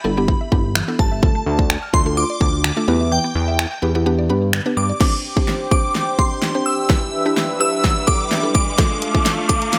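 Upbeat and summery, this dance-pop clip moves in a straight four-beat pulse, cut from a longer piece and set in a light reverb. A shimmering, dreamy bell with a bright halo carries the melody up front, treated with ensemble chorus and phaser, while a woody, round mallet-like synth pluck supplies accompaniment in the background with chorus, phaser and sidechain pumping. A second mallet-like pluck plays arpeggios from 0.2 to 5.0 seconds, its percussive FM tone set back in the mix with chorus, tape echo and pumping. Beneath them, a fat, detuned sawtooth analog bass pumps up front through the first half, and a punchy, layered pop drum kit with kick, fat snare, hi-hat, finger snaps and crash drives the track, though the kick drops out from 3.1 to 5.0 seconds. At 5.0 seconds the second half begins a build-up with a drum fill, a smooth, detuned analog pad entering on sustained chords with chorus and pumping, and a background riser climbing in from 6.3 seconds.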